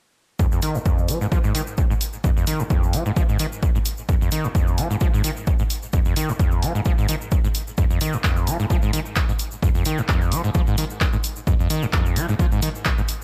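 An overdriven, squelchy acid bass riff with tube saturation, subtle chorus, 12-bit sampler grit and tape echo opens alongside a punchy, tape-warm electronic kick and a grainy egg shaker in the background at 0.4 seconds. A small-room analog drum machine's handclaps and hi-hat join at 0.6 seconds, driving a raw, hypnotic acid house groove in F minor at 130 BPM with a light 16th-note swing under light reverb, in an excerpt cut from a longer piece.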